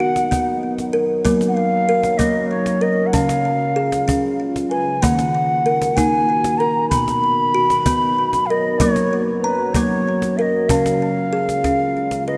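A meditative, hypnotic world piece in 6/8 at 64 BPM, this excerpt cut from a longer work sets an up-front airy bamboo bansuri melody with vibrato and delay over ringing, woody kalimba arpeggios, a deep, dark detuned pad with chorus and long release, and snappy, close cajon, all bathed in a lush hall reverb while the chords move through B, Gb, Db and Ebm.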